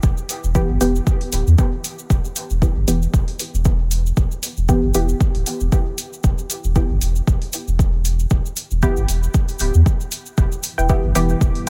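Dry, with little reverb, this hazy, deep dub techno excerpt sits at 116 BPM in 4/4 with a light swing on the sixteenths, centred on E minor. An overdriven electronic kick drum and a round sine sub bass sit up front together, the bass pumping against the sidechain while it holds the low end from D1 to E2. Overdriven metallic hi-hats and a grainy, bright cabasa add texture above, the cabasa tucked quietly beneath the rest. From 0.6 seconds, muted, detuned sawtooth chord stabs with a filter pluck carry chorus, phaser and dub echo, and a filter sweep runs across them. Near the close, at 10.7 seconds, a very quiet, moody ambient pad enters with a slow attack, and at 10.8 seconds a brief, higher stab riff flickers through with chorus and dub echo.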